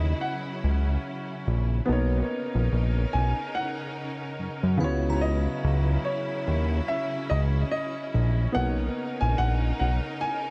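Contemporary R&B in B major at a slow 72 BPM, this smooth, dreamy excerpt sways with a swung sixteenth-note feel and sits in a small, echo-heavy room. A warm baby grand piano carries the melody in a natural tone, while a felt-muted upright piano supplies soft, intimate accompaniment with short sustain, both touched by tape echo. A clear studio string section holds lush, bowed chords with vibrato and a smooth top beneath them. Up front, a fat analog bass built from detuned sawtooth and square waves gives a thick, nasal low end with a filter pluck, playing until 10.0 seconds. Between 4.8 and 7.5 seconds a glassy FM synth bell adds crystalline, decaying sparkle in the background, colored by chorus and tape echo. The harmony moves between C#m11 and Bmaj9 throughout.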